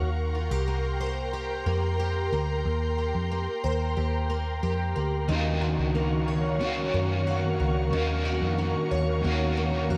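Dark, lightly reverberant production frames this floating, blissful dream pop excerpt, where an airy, detuned pad with ensemble chorus sustains Cm11 and Gbmaj7 chords over woody, shimmering twelve-string acoustic arpeggios treated with analog chorus and tape echo, a round, punchy foam-muted bass sits up front, and at 5.3 s an overdriven hollow-body electric guitar joins with harmonic tremolo and lush chorus.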